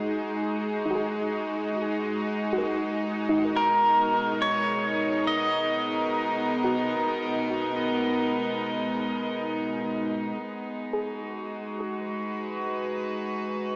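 A clean, fingerpicked pedal steel guitar with slide and volume swells carries the melody from 3.6 to 9.5 seconds in this serene, spacious ambient excerpt in G# minor at 70 BPM. It is set over a reedy, gut-string studio string section that fades in across the first 10.4 seconds under shimmer reverb, a bright, tense bowed-like drone, and soft, round pluck arpeggios with subtle chorus and analog delay tucked in the background, all heard through a cassette home recording with a small-speaker sound and a wet spring reverb.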